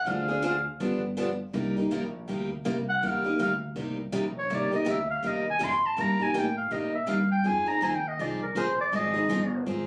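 A swinging 163 BPM pulse in 4/4 drives this virtuosic excerpt of acoustic string swing in C minor, where a growling, raspy clarinet with light vibrato, subtone and scooped notes plays the solo melody briefly from 0.0 s and again from 2.9 s, over bright, boxy picked parlour steel-string guitar accompaniment and a woody, thumpy pizzicato upright bass on gut strings, moving from Dm7b5 and G7 to Cm9 and Fm9 in a roomy, phone-captured club sound with reverb and compression.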